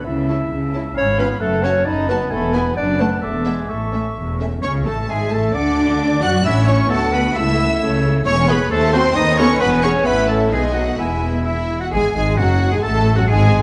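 Clear oboe, dark distant clarinet, pure metallic flute and roomy French horns holding sustained chords open this graceful, cheerful classical-period orchestral movement at a quick 132 BPM in 2/4, joined almost at once by close, even cellos and lush double basses, then at 0.3 s by a smooth, lightly vibrato violin melody over rich, expressive second violins and warm background violas, the music moving from A major into E major at 8.3 s within a moderate scoring-stage reverb in this section cut from a longer piece.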